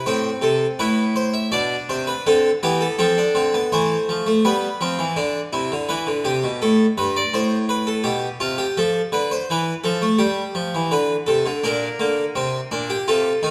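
A solo harpsichord opens the recording, plucked and airy with a full Flemish-style tone from its two sets of strings, placed up front in a reverberant recital hall. This is a classical piece in baroque style, a three-part fugue in 4/4 at 83 BPM with a straight feel, and its mood is joyful and elegant. The instrument spans from G2 to E5, tuned to A4 = 439 Hz. The harmony moves from A minor through a rootless G over B, F and E minor, then on to A minor seventh, D minor, G and G minor over B-flat. The hall's reverb, with a 1.5-second decay, adds a generous bloom around the harpsichord throughout this 13.5-second passage cut from a longer piece.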